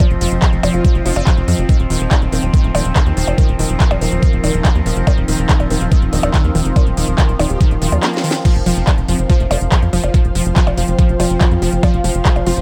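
Hypnotic and intense, this psychedelic trance excerpt drives along at 142 BPM in a straight 4/4, its tape-warm knocking kick up front beside a tight, dark sequencer bass, while an overdriven techno kit adds cracking snare, smooth hats, handclaps, crash cymbal and percussion blips. A lush, warbling unison pluck riff carries dub echo and sidechain pumping over an overtone-sweeping drone with chorus and a background ethereal pad, and a very quiet formant-sweep wobble bass slips in and out, first at 0.7 seconds. A faint electronic swell enters at 7.8 seconds, and the kick drops out for a drum fill at 8.0 seconds, all in a dry mix.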